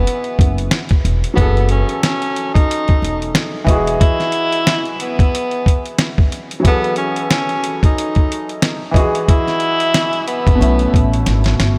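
A dreamy mix soaked in a huge ambient reverb gives this moody, tough boom-bap hip-hop fragment a deep, hazy space, cut from a longer piece. At 91 BPM in 4/4 with a swung sixteenth-note feel, a gritty, compressed sampler-style drum kit sits up front with a thumpy kick, fat snare and hi-hat, joined by a very quiet, close finger snap. A breathy tenor saxophone carries the solo melody in a jazz style, clear and soft in attack with vibrato, treated with filtering and analog delay. Beneath it, a slightly detuned upright piano with audible action noise plays intimate accompaniment through a cassette-tape colour, moving between Emaj9 and F#m9 before landing on B9sus4. A woody pizzicato upright bass on steel strings drops out at 4.0 seconds and returns at 10.5 seconds, and a drum fill at 11.3 seconds closes the passage.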